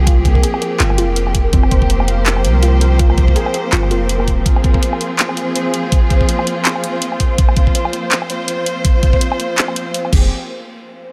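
A knocking electronic kick sits up front in this dark, tense half-time drum and bass passage cut from a longer piece, alongside a layered kit of crash cymbal, handclaps, hi-hat and woodblock, a deep, sine-like 808-style bass that holds long decaying notes with tube saturation until 4.4 seconds before briefly returning at 10.1 seconds, warm bowed studio strings sustaining an Fmadd9 chord with vibrato and sidechain pumping, a warbling, lo-fi pluck playing arpeggios through chorus and dub echo in the background until 4.1 seconds, and a mellow, pulsing gated texture with chorus and built-in reverb, all in a light reverb.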